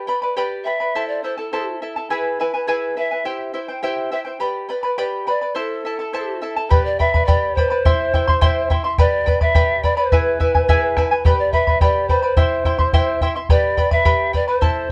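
Festive yet melancholic, this Andean folk excerpt in 2/4 starts at 105 BPM and speeds up throughout, as a bright, shimmering fingerpicked charango with double strings plays accompaniment up front, an airy, distant bamboo pan flute with a reedy tone, soft chiffy attack and vibrato carries the melody from 0.6 seconds, and a round acoustic bombo enters up front at 6.7 seconds, all captured with close, detailed microphones and light reverb.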